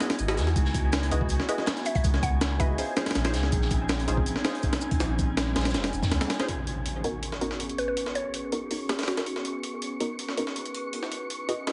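A drum and bass and jungle cut at 162 BPM in 4/4 with a straight feel, this atmospheric, raw excerpt opens on a drop over C#m11 that moves to A#m11, then to G#m11 at 6.5 seconds before returning to C#m11. An up-front, sampler-style breakbeat kit with a thumpy kick and high-tuned snare drives the whole passage, while a second, crunchy acoustic breakbeat kit with hi-hat, shaker and snare sits saturated in the background until 6.4 seconds. A deep, round sub bass anchors the low end until 6.2 seconds, beneath a warbling, nostalgic tape-like pad holding sustained chords and a muted, detuned dub chord stab with phaser and dub echo that gets a filter sweep from 6.5 seconds onward. A woody, mallet-like FM pluck carries brief melodic phrases with chorus and dub echo, an airy, breathy wind-like noise texture hovers high above, and an electronic impact marks the shift at 6.5 seconds. The mix has light reverb, a heavily compressed radio-like sound, vinyl crackle and a dulled top end, giving the whole piece a lo-fi, vintage character.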